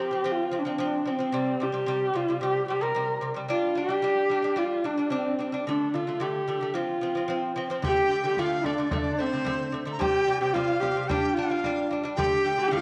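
This Mongolian folk excerpt opens at 0.0 seconds with a husky, dark horsehead fiddle carrying the melody up front, bowed on horsehair strings by a single player with vibrato and portamento. Beneath it, a lute plays delicate, fingerpicked arpeggios on double gut strings, some doubled at the octave, giving a warm, acoustic bed. The mood is proud and vast, moving at a steady 111 BPM in a straight 4/4. At 7.8 seconds the second section begins as an airy bamboo dizi enters with a tongued, expressive second line, its buzzing membrane and vibrato sitting above the fiddle. A deep, large frame drum joins at the same moment, played with soft hands and heard close, and both continue with the fiddle and lute until the cut at 12.8 seconds. A moderate echo chamber reverb with a 1.6-second decay gives the whole a studio sense of space.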